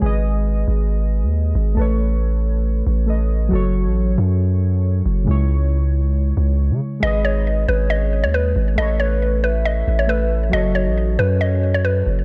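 A dark, lightly reverberant production frames this brooding half-time hip hop excerpt, where warbly, detuned lo-fi synth keys with a nostalgic, full-bodied tone and chorus carry the chords over a deep, sine-like 808-style bass that sits up front with long, decaying notes. At 7.0 seconds a woody, round mallet-like synth pluck takes the melody with chorus and delay, mellow and percussive with a vintage FM character. Just after, at 7.2 seconds, a hollow, soft clarinet-like synth lead adds a second line in the background, its sustained notes colored by vibrato, a sub octave and a noise layer.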